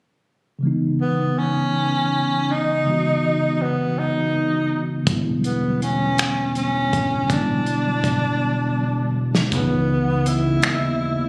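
In a slow, straight 6/8 at 54 BPM, this sultry late-night R&B fragment opens on a mellow tine electric piano playing C#m9, joined at 1.0 seconds by an intimate, breathy tenor saxophone with vibrato, scooped notes and delay up front, before a rubbery, hollow square bass and a soul drum kit with finger snaps, hi-hat, a tight kick and a medium-tuned snare arrive at 5.1 seconds as the harmony moves to Em9, with a drum fill from 8.4 seconds leading back to C#m9 in a small, lightly reverberant room captured on a phone.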